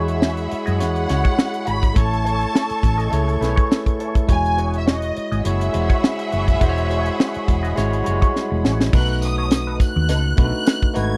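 Lush 1970s-style soul at 103 BPM with a smooth, bittersweet mood, this dry, close excerpt sets a distant, expressive violin section's melody over a bright string section's second line that stops at 8.9 s, a bell-like, barky tine electric piano with a fill at 3.4 s, a twangy wah-and-spring-reverb guitar riff in the background, a dark, round hollow-body bass and a tight, up-front funk kit, with a jingly tambourine joining at 8.9 s as the chords move from E69 and Amaj7 to B7.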